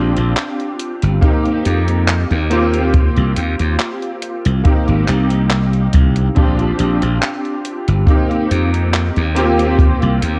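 A straight 4/4 groove of detuned, sampler-style 8-bit drum-machine handclaps and hi-hat, tape-warm and set in studio reverb, gives this nostalgic, faded vaporwave excerpt its pulse, joined at 1.2 s by a dark, punchy acoustic kick, while a glassy, growly slap bass and a bright, clangy electric grand piano coloured by ensemble chorus and analog delay sit up front through sixth-nine, suspended-seventh and rootless major-ninth chords, the mix carrying light reverb and a cassette-tape character.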